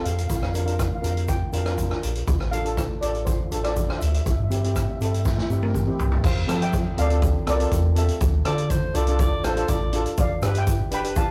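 A rough rehearsal-room recording with warm saturation and a moderate studio reverb frames this bouncy, carefree calypso fragment in F major at 121 BPM, where a lead steel pan carries the shimmering, mellow melody over a second pan playing soft accompaniment on double seconds through Bb, Dm, C, F, Dmadd9 and G7. Underneath, a deep, clean sine sub bass holds down the low end while an up-front, boomy acoustic street-band drum kit with a mid-forward, rolled-off top drives the groove, and a grainy egg shaker sits close but in the background. A drum fill at 5.3 seconds leads into the second section, and at 8.5 seconds an edgy, punchy alto saxophone adds a brief vibrato-laden solo line.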